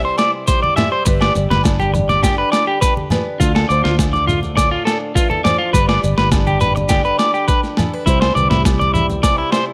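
A straight 4/4 pulse at 103 BPM drives this joyful, sunny highlife guitar band excerpt, where a slightly broken-up electric guitar plays up-front arpeggios through analog delay over a dark, boxy fingerpicked swing-style acoustic guitar with finger squeak, a round, foam-muted fingered bass, and a gritty, pitched-down sampler-style boom bap kit with a thumpy kick and high-tuned snare. Grainy maracas join ringing agogo bells and low-tuned congas, the bells and congas sitting further back, all in a light reverb as the chords move from Cadd9 through G and Dm.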